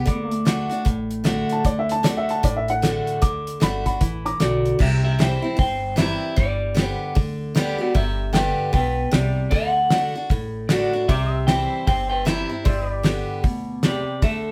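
A twangy, slightly broken-up electric guitar carries the melody from 4.4 seconds, sitting up front in this nostalgic, down-home honky-tonk and classic country excerpt at 153 BPM in G major with a swung 4/4 feel. Before it arrives, a dark, boxy upright piano takes a soloing second line high in its range, its long sustain and audible action noise giving the opening an intimate, mellow character. Underneath, a bright, full-bodied jumbo acoustic guitar is picked as accompaniment while a thumpy, gut-strung upright bass is plucked with a woody tone. A dry, damped drum kit, the loudest part, drives things with a fat snare, tight kick, hi-hat and crash. A clean, compressed pedal steel, played with fingerpicks and slide, adds sustained chords with volume swells in the background during the first 4.8 seconds and again from 11.1 seconds. The band sounds like it is playing live in one room with moderate reverb, moving through D, C and G chords.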